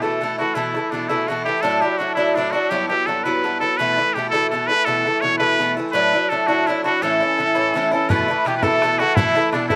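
A muted trumpet leads this rollicking Celtic jig, its nasal, brilliant tone carrying a classical-style vibrato up front with a slapback echo, while an Irish bouzouki picks out a metallic, double-strung accompaniment at 112 BPM in a lively 6/8 in A mixolydian. Near the close a bright wooden flute slips in at 7.9 seconds as an airy, crisp-edged second line in the background, also with slapback echo, and a tight, damped bodhran joins at 8.1 seconds as the section repeats. The dry outdoor sound keeps this brief cut from a longer piece close and direct.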